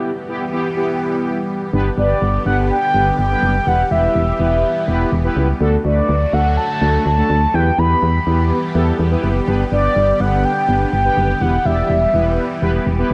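A straight 4/4 pulse at 124 BPM drives this cool, forward-moving pop passage in E minor, cut from a longer piece and tuned slightly sharp of standard pitch. It opens with a short break in which fat, detuned analog synth brass, vintage and warbling with chorus and vibrato, plays over a lush unison pad whose slow attack, long release and phaser give it a thick, bright shimmer. At 1.7 s a punchy, round FM bass enters up front with a fast, decaying attack, and from 2.0 s a mellow, horn-like synth lead carries the melody high in the register, its soft attack, vibrato and analog delay keeping it sustained and prominent. The harmony cycles through Em, G and D, settling back on Em at the close. Light reverb and digital ambience give the mix a gentle sense of space.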